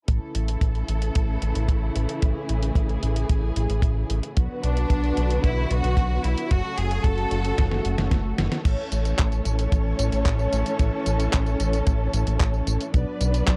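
Romantic and playful, this italo disco excerpt moves in a straight 4/4 over A, Bm and F#m, with a round, deep analog bass up front under a filter sweep and a dry, tight kick, while a detuned 8-bit drum machine adds tape-warm snare, hi-hat, handclaps, tambourine and crash. Dark, lush studio strings hold sustained chords throughout, and a bright, intense symphonic violin section carries the melody with tape echo from 4.6 to 7.8 seconds. A drum fill and a background electronic swell lead into the second section at 8.7 seconds, all captured in a close, dry 1970s-style studio sound.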